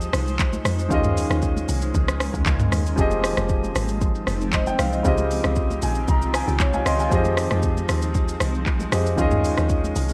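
Late-night and soulful, this amapiano excerpt settles into a straight groove built around a concert grand piano that sits up front with an intimate, natural tone, audible action noise and long sustain, carrying the accompaniment across a progression that moves from Fm7 through Eb7sus4 to a lush Dbmaj9#11. A deep log drum bass gives a round, percussive low end, its fast attack and dark, decaying body layered with a touch of noise. The produced electronic drum kit punches forward with a deep kick, smooth hats, handclaps, rim clicks, shaker and toms, while soft-handed congas enter at 0.4 seconds, very quiet, close and dry with a bright, thin skin. Behind them, a granular cloud pad holds blurred, detuned sustained chords with a slow attack, long release and its own reverb, evolving in the background. The piano steps out with a fill between 5.6 and 7.1 seconds, and the whole mix is coloured by a worn cassette-tape ambience with warbly pitch drift.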